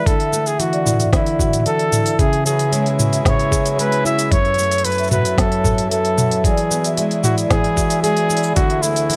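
Playful and warm, this folktronica excerpt at 113 BPM sets a breathy, whispered flugelhorn melody up front over a mellow soft-mallet vibraphone line with fast motor vibrato, thumb-plucked nylon-string guitar arpeggios with finger squeak (all three touched with delay), a muffled, thumpy sampler-style kick, and a crisp-hatted organic electronic kit with woody snare, shaker and toms, while a reedy, airy pedal harmonium drifts in behind them at 2.2 seconds through a small room ambience as the chords move from Dadd9 through C#m, F#m and Eadd9.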